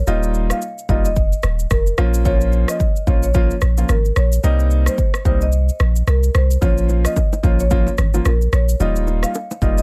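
A woody, round marimba melody with soft mallets and a touch of delay opens this smooth, hypnotic afrobeats excerpt over a punchy, up-front sine sub bass with a pitch-drop attack, joined almost at once by a warm, present baby grand piano with long sustain and an electronic afro-pop kit of deep kick, rim click and shaker swung on the sixteenths, the kick falling silent from 5.5 to 6.6 seconds before ringing acoustic congas and bongos played with soft hands slip in at 6.6 seconds in the background, all set in a room with little reverb.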